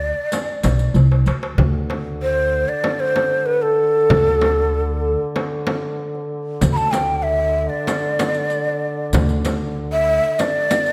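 Heard through a moderate scoring-stage reverb, this soulful, longing fragment of a Turkish makam ensemble at 95 BPM in D makam huseyni sets a breathy, hollow ney with vibrato up front on the melody over woody, thumpy pizzicato upright bass, while a crisp metal-shell darbuka and a small, bright frame drum played with hard hands keep time, a dark-jingled riq comes and goes until it returns at 6.6 seconds, and a drum fill at 1.0 seconds leads into a distant, scooped-note duduk drone on D3 that enters at 1.6 seconds.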